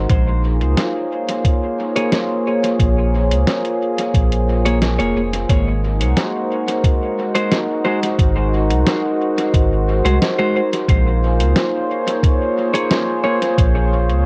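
A chorused, warbling analog pad and a deep, round sine sub bass open this hazy, spacious ambient dub passage alongside a very quiet, bubbling, resonant filter texture. A muffled, thumpy kick carries cassette grit while a pitched-down lo-fi kit of hi-hat and snare drifts through dub echo and cassette grit, clean picked electric guitar stabs arrive at 2.0 seconds, and a band accent at 4.8 seconds leads into the shift from Bbm7 to Ab7 at 5.5 seconds, where the bubbling texture falls away.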